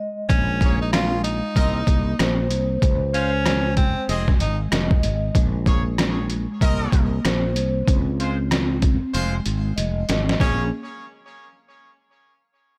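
An overdriven, pitched-down sampler-style drum kit sits up front in this tough, gritty boom-bap hip-hop excerpt at 95 BPM in Bb minor, its thumpy kick, medium-tuned snare, rim click and hi-hat swinging through a small room, with a drum fill from 9.1 to 10.4 seconds. A growly fretless electric bass with analog chorus holds the low end beneath a mellow vibraphone with soft mallets and fast motor vibrato, its ringing tone colored by cassette tape. An edgy jazz tenor saxophone with delay carries the scooped, vibrato-laden melody until 4.6 seconds and returns briefly at 10.4, while a distant, roomy trumpet section adds clear pop-style stabs over chords moving from Bbm7 through Dbmaj7 and Fm7.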